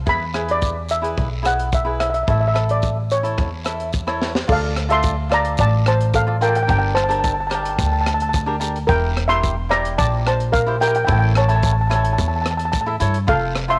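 A straight 4/4 calypso groove at 109 BPM in D minor sets a brooding, cool mood in this excerpt from a longer piece, with a shimmering lead steel pan up front, mellow, crisp picked cavaquinho, a woody, thumpy pizzicato upright bass, a tight funk drum kit with a high-tuned snare that plays a fill at 4.2 seconds, and a raspy guiro in the background, the pan, cavaquinho and drums carrying a cassette-tape color inside a small, lightly reverberant room on a home cassette recording.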